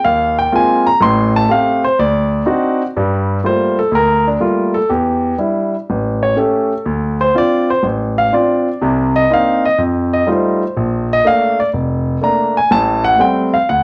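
A worn, warbling old cassette sound colors this recording, its pitch drifting under a moderate club reverb that gives the playing a small-room glow. It is a smoky, late-night jazz piece for solo concert grand piano in a swung 4/4, cut from a longer performance and lasting 13.8 seconds. The piano sits up front with a warm, intimate, polished tone, deep bass and long sustain, and the noise of its action can be heard beneath the notes. Its range stretches from the low F1 up to C6. The harmony moves through rich jazz chords, opening on Ab69, Am7 and D7b9 before settling at 2.9 seconds into a fresh pass that runs through Gm9, Em7, A7, Dm7, Cm9 and F9 toward Bbmaj7 and a closing Am7.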